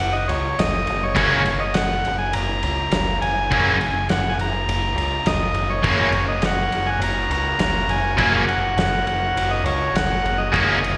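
Heard through a venue's PA with small-room ambience and a recital-hall reverb, this swaggering, raw garage rock fragment in straight 4/4 opens on an F# chord, with an overdriven, buzzy vintage combo organ carrying the melody through slapback echo over a growling, punchy picked electric bass. An oversized, low-tuned acoustic drum kit joins at 0.3 seconds with a fat snare, punchy kick and dark crash and ride cymbals, sounding saturated and gritty, and at 1.1 seconds a cranked, double-tracked stack guitar, bright and overdriven with its own slapback echo, drives the riff up front. From 5.8 seconds a second, clean combo organ adds sustained chords underneath.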